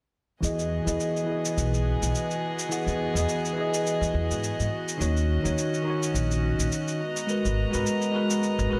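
Bathed in a wet concert-hall reverb, this sunny, smooth sunset chillout excerpt in E lydian moves at 105 BPM with a light 16th-note swing. From 0.4 seconds a bright, bell-like tine electric piano sits up front, carrying a filter sweep and digital delay over Emaj7, D#m7 and G#m9 chords, while a floating chamber string section holds pure, sul tasto bowed chords. Beneath them, a woody pizzicato upright bass with gut strings and tube saturation thumps up front, and a gritty, tape-warm sampled cabasa adds texture until 8.7 seconds.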